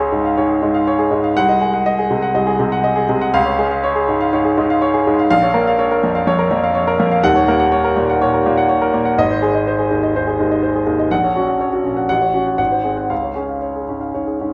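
A warm, present grand piano plays alone from the first moment in this brilliant, heroic virtuoso classical study, its long-sustaining tone ranging from deep bass to bright upper register under free rubato in a resonant recital-hall reverb, with the harmony passing through minor colours before returning home at 13.1 seconds in a fragment cut from a longer piece.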